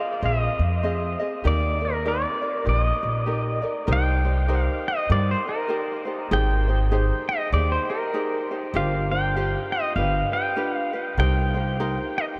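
Soaked in a huge, wet ambient reverb with a long 7.9-second tail, this dreamy mix opens onto a sunny, relaxed Hawaiian scene at 99 BPM, swung gently in 4/4. An electric pedal steel guitar carries the melody up front, clean and compressed, played with fingerpicks and slide, its volume swells and analog delay floating over the harmony. Beneath it a light, bright acoustic ukulele is fingerpicked in accompaniment, while a woody pizzicato upright bass with steel strings sits forward in the mix from 0.2 seconds. The music begins in Eb major with sus and major-seventh colours, then turns to C minor at 3.9 seconds, moving through Cm7, Abmaj7 and a G7sus4 resolving to G7 before settling back on Cm7. Cut from a longer piece, this short passage lets the warm steel line drift above a warm, easygoing groove.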